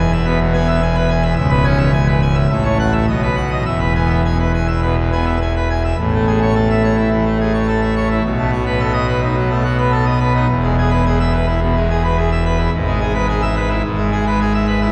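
A cathedral's long, wet reverb and a faint mains hum surround this short cut from a larger classical organ toccata, which sounds as if heard from further back in the room. The pipe organ plays alone on full organ for the whole 14.9 seconds, spanning C#1 to G#5 with bright mixtures, a baroque voicing and a crisp chiff at the front of its notes. The mood is majestic and brilliant, with a steady, straight 4/4 pulse and rich harmonies that move through chords such as C#m7, Amaj7 and B7 before settling back home.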